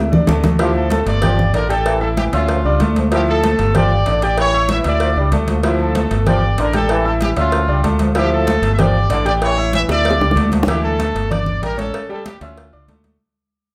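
Passionate and driving, this salsa cut from a longer piece moves at 190 BPM in D harmonic minor, with a punchy, up-front fingered electric bass and a brilliant, polished grand piano carrying the accompaniment under congas with a thin, medium-tuned skin and tight, high-tuned cowbell and bongos played with soft hands. A clear, tight trumpet section with light vibrato takes the melody from 0.6 seconds, while a mellow, roomy trombone section sits distant in the background as a second line until 10.6 seconds. The band plays live in one room with moderate large studio reverb, circling a Dmadd9, G5 and A7 progression, with drum fills opening the piece and leading into a closing section that fades out from 10.7 seconds.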